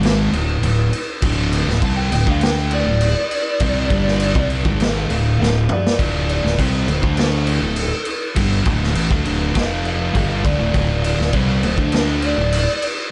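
A dark, gritty, lightly reverberant mix carries this brooding stoner and doom metal excerpt at 101 BPM in D minor, where two thick fuzz guitars play a picked riff in the background over a growly, overdriven fingered bass and a saturated, roomy garage drum kit with a punchy kick and a drum fill at 5.4 seconds, while a compressed fuzz lead guitar with tape echo enters at 1.8 seconds to carry the melody.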